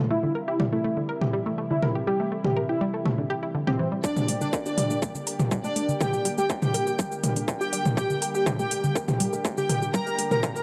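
A lush, airy sawtooth pad and a punchy, detuned pluck arpeggio with tape echo open this cinematic, hypnotic melodic techno excerpt in G dorian at 122 BPM, joined almost at once by a thick, bold lead melody with vibrato, analog chorus, 12-bit sampler grit and delay, the three synths pumping against the sidechain over a C chord. An up-front house kit of metallic hats, shaker and overdriven toms arrives at 0.6 seconds, and at 4.0 seconds the harmony turns to Gm as a distorted kick and a smooth, bowed violin section enter for a build-up while a filter sweep works over the arpeggio. Light reverb and cassette tape give the dry hardware recording a worn edge.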